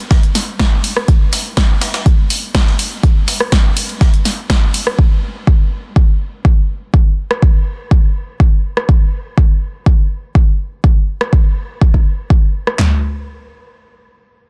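A straight house groove drives this bittersweet, dreamy fragment, cut from a longer piece and built entirely from layered drum kits. The main deep house kit sits up front with a deep kick, handclaps, toms and a punchy snare, all pushed through overdrive and re-recorded in a small room. A second deep house kit adds hi-hat, rim click and its own snare, with the same overdriven, roomy character layered alongside. In the background, a gritty, pitched-up breakbeat sampler kit contributes compressed hi-hat and a high-tuned snare, both filtered thin, with the hats pumping from sidechain compression until it drops out at 4.9 seconds. The drums carry on until about 12.8 seconds, where a brief closing section takes over. The dense, heavily limited modern master sits in a digital ambience.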